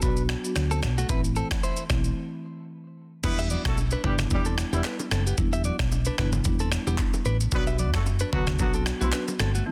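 A woody marimba, a bright, clean electric guitar with tape echo, a round hollow-body electric bass and an up-front, gritty sampler-style drum kit with soft clipping on the snare open this sultry, hypnotic afrobeats excerpt with a light swing, and after a break at 2.2 seconds a dark, distant horn section and very quiet congas and bongos join at 3.2 seconds within a dry, dense, heavily limited master.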